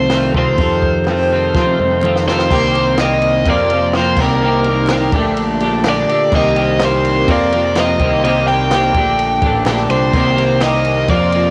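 Restless and moody, this indie rock passage in a straight four feel is cut from a longer piece and carries the hazy character of a home recording on cassette. Up front, an overdriven electric guitar carries the melody with a compressed, picked bite, while a double-tracked twelve-string electric guitar plays a clean, warm riff beneath it; both guitars are colored by cassette tape. A fuzz picked electric bass adds a gritty, overdriven low end. A compact cocktail drum kit, dry and natural with dark cymbals, a high-tuned snare and a punchy kick, plays a fill from 1.5 to 2.5 seconds that leads into the second section, where the harmony circles around Cm7, Fsus4 and Gmadd9. A very quiet group handclap sits close and crisp beneath the mix, and light reverb with small room ambience frames the whole performance.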